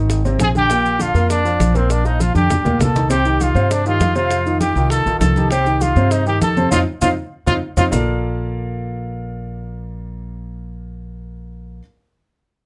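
A breathy, whispered trumpet carries the melody up front with mellow vibrato, shadowed an octave-range higher by a hollow silver flute in the background, in this sunny, sophisticated Afro-Cuban jazz excerpt in Bb major at a brisk 199 BPM. A warm grand piano with audible action noise and a woody, growly pizzicato upright bass anchor the harmony through the full 11.8 seconds, moving from Bbmaj7 through Cm and F7 before returning home, while low-tuned congas, very quiet high-tuned bongos and grainy, vintage maracas drive the groove until 8.0 seconds. Drum fills mark the turns at 2.2 and 6.7 seconds, the latter landing with a band accent, and light reverb gives the close, detailed sound a touch of air.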